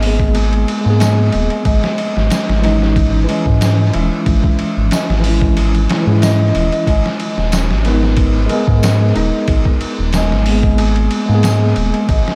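A dry, echo-heavy mix opens this brooding, dark trip hop excerpt, set in G# minor at 92 BPM with a light swing on the sixteenths. Up front, a muffled, pitched-down sampler-style drum kit plays kick, snare, hi-hat and ride. Its overdriven, compressed hits carry dub echo and the colour of a small room. A round, detuned analog bass sits just as forward, deep and evolving, while a clean tine electric piano carries the chords through tremolo, harmonic tremolo, 12-bit sampler grit and tape echo. A thumb-plucked concert harp rings out arpeggios that are also fed through tape echo, and a bright tambourine enters in the background at 1.0 s, touched with dub echo. The harmony moves from G#madd9 to C#madd9 and back, and a barely audible electronic riser surfaces at 12.3 s.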